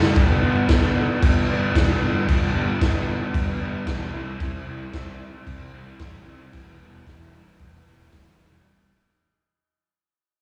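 A drum fill with crash, punchy kick and gritty snare opens this swaggering, raw garage rock fragment in E minor at 113 BPM in a straight 4/4, where an up-front, double-tracked overdriven guitar riff with spring reverb and slapback echo moves through G, C and Em over a growly fuzz bass sitting in the background, all heard as a live gig through the venue's PA with recital-hall reverb as the whole clip fades out over its 8.7 seconds.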